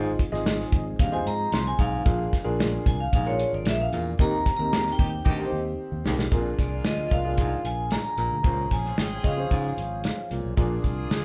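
This is an uptempo 1960s-style soul piece at 113 BPM in Bb mixolydian, joyful and danceable, cut from a longer performance. An up-front acoustic drum kit with a tight kick, a medium-tuned snare and a rolled-off top drives the groove alongside a warm fingered electric bass, while a raspy, growling baritone saxophone riffs low underneath. A woody, slightly detuned upright piano with a worn, boxy character comps through the changes, and a very quiet, dark tonewheel organ holds round sustained chords through a rotary speaker with audible key click. From 1.0 s a vibraphone played with hard mallets takes the lead melody, metallic and ringing with motor vibrato, and a close-miked jazz-style saxophone section adds a soft-attack second line from 4.7 s. The band hits an accent and the drums play a fill leading into the second section at 6.3 s, as the harmony moves through Ab6, Bb7, Eb6 and Dbmaj7. 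The whole group sounds like it is playing live together in one large studio with moderate reverb.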